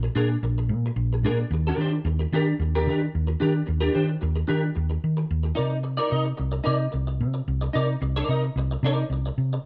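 A straight 4/4 pulse at 111 BPM drives this short disco cut, which is lifted from a longer piece and set in C minor with the tuning pitched at A4 = 444 Hz. The mood is sultry yet driving. A hollow-body short-scale electric bass, fingered and sitting up front with a dark, round, amped tone, carries the low end from Bb1 up to Eb3 throughout. Above it, a clean electric guitar plays accompaniment between D4 and Eb5, its picked, compressed sound given a shimmer by ensemble chorus and placed a touch lower in level than the bass. The harmony moves from Bb7 to Ebmaj7 at 1.5 seconds and settles on Cm9 at 5.6 seconds, all wrapped in a light reverb.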